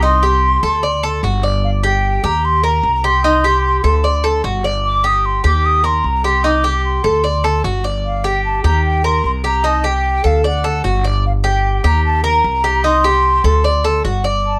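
Nostalgic and sultry, this short fragment of Cuban son and guajira moves at 150 BPM in a straight 4/4, set in G minor with tuning pitched at A4 = 438 Hz. A breathy, mellow silver concert flute carries the melody, its tongued notes shaded with vibrato and a hollow, close-miked intimacy. Beneath it, the Cuban tres picks bright, metallic arpeggios on its doubled strings, some of them octave-doubled, sitting up front in the mix. The upright bass anchors the low end with woody, thumpy pizzicato on gut strings, dark in tone and also placed up front. All three parts play together from 0.0 to 14.6 seconds over a repeating cycle of Cm, D7, G5 and Eb, with a turn to Gm at 11.2 seconds, all set in a light reverb.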